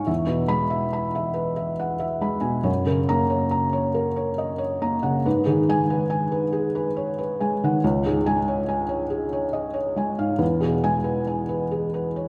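Flowing with a rubato feel in 3/4 at 70 BPM, this intimate, reflective neoclassical minimalist fragment features a solo felt-muted upright piano, tuned to A4 = 439 Hz, sounding mellow, dark and up front with audible action noise, spanning C#2 to C#6 across chords of E, F#, G#m, C#5 and back to E, all bathed in a wet church reverb with a 3.1-second decay.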